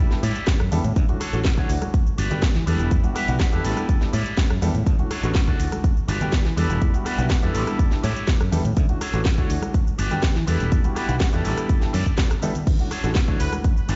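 Sunny and joyful, this filtered disco house excerpt at 123 BPM in D major cycles through Dmaj7, Gmaj7, Em7 and A7sus4 as a punchy, up-front electronic kick and a house kit of cracking snare, metallic hats, rim click, cabasa and crash drive under a growly fingered bass, a dark, mellow baby grand with phaser and 12-bit grit, a twangy envelope-filtered guitar riff, a very quiet egg shaker and hard-hand congas, and a brilliant trumpet section stab with delay at 13.4 seconds, all inside a large studio reverb whose top end is filtered off, with sidechain pumping on the piano, guitar, bass, trumpets and the kit's hats, percussion and cymbals.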